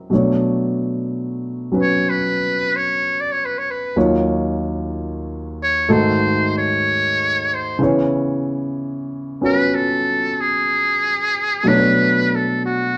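A buzzy, thin trumpet with a metal mute carries the melody with vibrato in a forceful jazz solo style, entering at 1.8 seconds over a baby grand piano that plays from the start. The intimate piano accompaniment sits up front, its action noise audible, while moving through minor seventh chords and a G#5 to a closing Bm9. The jazz ballad has a late-night, romantic mood and a swing feel, set in a moderate large-studio reverb with a dark, warm production.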